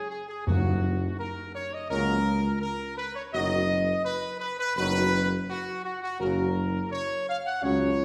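Heard from further back in a recital hall with a wet reverb, this triumphant, regal classical brass passage in F# major moves at a stately 84 BPM in 4/4, cut from a longer piece. A clear, close-miked trumpet section carries the melody up front with light vibrato, while a very quiet horn section holds tight sustained chords alongside a vintage-toned trombone section in the background, above a mellow, smooth-topped tuba bass. Timpani struck with hard mallets give an articulate accent from 0.5 to 1.5 seconds as the harmony moves from F# to B over F# and back to F#.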